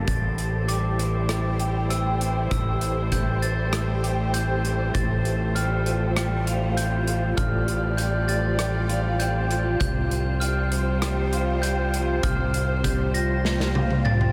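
A distant, bowed string section holds sustained chords with expressive vibrato while a slightly broken-up, lo-fi electric guitar picks arpeggios through chorus and tape echo, a ringing, bell-like glockenspiel played with soft plastic mallets adds its own echoed arpeggios, and a growling, overdriven fingered bass sits up front. A big acoustic rock kit with a boomy kick and medium-tuned snare joins at 0.1 seconds, driving this brooding, cathartic post-rock in a straight 4/4 through Am7, Fadd9/A and Csus4. A dreamy wash of huge ambient reverb soaks the mix, and a drum fill from 13.4 seconds carries this fragment of a longer piece to its cut-off.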